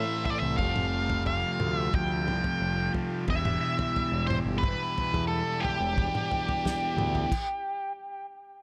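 A dark, up-front octave-fuzz lead guitar carries the melody in this short, trippy, hypnotic psychedelic rock excerpt, its distorted picked tone trailed by tape echo. Beneath it, a double-tracked fuzz guitar plays a low riff through distortion and a phaser, while a growling picked electric bass adds overdriven grit in the low end. A buzzy vintage combo organ holds clean sustained chords with light vibrato in the background. A dry, damped 70s drum kit with a tight kick, medium-tuned snare, toms, crash cymbal and rolled-off top joins at 0.3 seconds, setting a straight 90 BPM pulse in 4/4 inside a small room ambience. The harmony moves from Am to Fadd9 and then Em. The bass drops out at 7.2 seconds, the organ and fuzz guitar stop at 7.3 seconds, and the drums finish at 7.5 seconds, leaving the lead guitar to carry on with its echo until 7.9 seconds.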